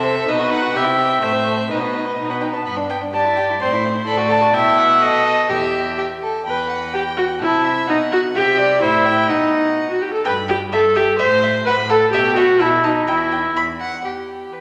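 Heard through the wet bloom of a scoring stage, this stormy, dramatic passage from a quick classical-period movement features a string quartet playing in period style on gut strings, with the viola sitting up front in a smooth-topped accompaniment. Above it, the first violin carries the melody with a light vibrato, while a close-sounding second violin weaves its own line and the cello anchors the bass with a rich, reedy tone. The opening material is stated twice, the second time from 6.5 seconds, with its minor-key harmony pushing repeatedly toward dominant chords before settling at 14.1 seconds.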